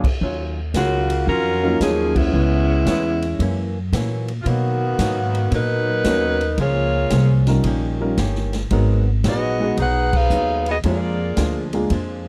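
A dramatic, sultry slice of big band swing cut from a longer piece, moving over a minor-key progression that opens on a lush Ebm9. The upright bass sits up front with a woody, dark pizzicato tone from the start, alongside a swinging drum kit of crash, hi-hat, ride, medium-tuned snare and punchy kick heard in a natural studio room. A tight saxophone section carries the melody from 0.8 seconds, its vibrato-laden jazz phrasing present and forward in the mix. A baby grand piano adds a brief touch near 1.6 seconds and then returns at 6.0 seconds to fill out the harmony. Further back, a clean, compressed hollow-body electric guitar supplies dark, picked accompaniment, while full-band accents land at 2.1 and 10.0 seconds in a dry, close recording with a 1970s studio character.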